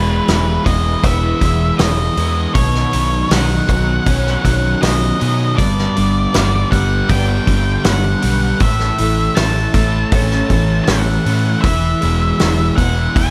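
Light reverb and studio ambience give this short cut from a longer rock piece, rooted in shoegaze and dream pop, a hazy, wistful air. An octave-fuzz lead guitar carries the melody in a high register, its distorted tone trailed by tape echo, while a bright, twangy twelve-string electric guitar picks compressed arpeggios very quietly beneath it. Two overdriven guitars play riffs in the background: one electric shaded by reverse reverb, and a hollow-body semi-hollow touched with subtle chorus. A vintage fingered electric bass, dark and round from its foam muting, holds the low end. A loose indie drum kit enters at 0.3 s, with a fat snare, punchy kick and hi-hat, a rolled-off top and an up-front place in the mix. Over a straight 4/4 feel, the harmony moves through E, Badd9, G and A before returning to E.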